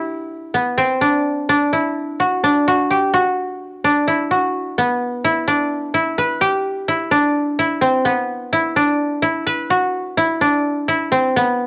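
A home cassette recording in a small room, lightly touched by reverb, puts a solo koto up front, its woody, dry tone shaped by fingerpicks across a range from B3 to B4. This short cut from a longer rock piece moves in a restless, intricate 7/8, the koto running through Cmaj7, Em9 and Dadd9 before a new section arrives at 4.8 seconds on Em7.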